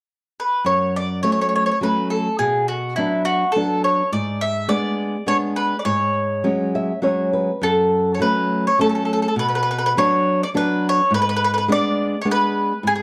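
Wistful and romantic, this excerpt of an Italian folk serenade moves in a lilting 3/4 at 103 BPM with a gentle swing, set in F# minor and circling through F#m, Bm, G#dim and C#sus4/G# chords. A round, double-strung mandolin carries the melody up front, while a small, boxy nylon-string guitar fingerpicks the accompaniment beneath it, bathed in plate reverb and adding a fill from 6.4 s before the second section begins at 7.6 s. The studio reverb and cassette tape character lend the sound a soft, intimate glow.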